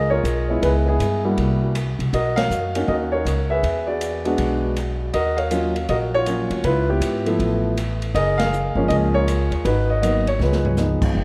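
Playful, sophisticated jazz piano trio swinging at 160 BPM in 4/4, where a warm, up-front grand piano carries the melody through tape echo over chords opening on a rootless F#maj9. Alongside, a woody pizzicato upright bass with steel strings and an acoustic drum kit, entering at 0.2 s with dark cymbals, a medium-tuned snare and a boomy kick, move through band accents and a drum fill at 10.4 s, all within a dreamy mix soaked in plate reverb.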